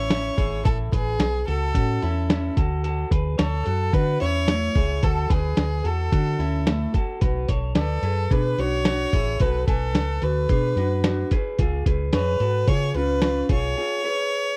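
Jangly indie pop at 110 BPM in straight 4/4, bright and nostalgic, tuned to A4 = 445 Hz and moving from Aadd9 through D and Bm to C#. A smooth, close bowed violin with vibrato carries the melody over twangy, slightly broken-up picked guitar arpeggios from a small old amp, while a dark, round hollow-body bass and a muffled, compressed, pitched-down sampler-style kit with a thumpy kick sit up front. The bass and drums drop away by 13.7 s for a short break, leaving violin and guitar in a dry, close 1970s-style studio sound with digital ambience, in this excerpt cut from a longer piece.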